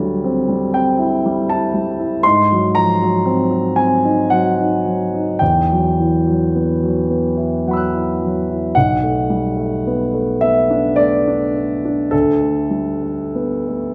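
Impressionist classical solo piano in a slow, rubato 3/4, drifting between 44 and 61 BPM with a luminous, hazy mood, taken from a longer piece. A concert grand sits up front with deep bass and long sustain, spanning B1 to F#6 as its harmonies move through D11, Ab9, Emadd9 and Bm7 before settling on D5 at 12.1 seconds. A wet recital hall reverb with a 1.7-second tail surrounds the instrument, which is tuned to A4 = 439 Hz.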